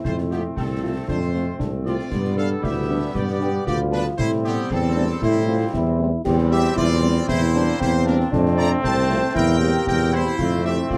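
A spirited, festive military-style march for wind band in a straight 2/4 at 116 BPM, heard as a short cut from a longer piece. A bright trumpet section carries the melody in a classical style. A clear, soft-attacked woodwind section and a euphonium with vibrato play second lines beneath it, while a warm tuba with light vibrato holds the bass up front despite its distant, roomy character. A trombone section with light vibrato sustains chords from 0.1 seconds, and a mellow, very quiet French horn section fills in accompaniment from 0.3 seconds. Concert snare, bass drum and clash cymbals with dark cymbal tone sit in the background. The harmony moves from F through G, Am7 and C/E to C7/E before settling back on F, all within a dark production with light reverb.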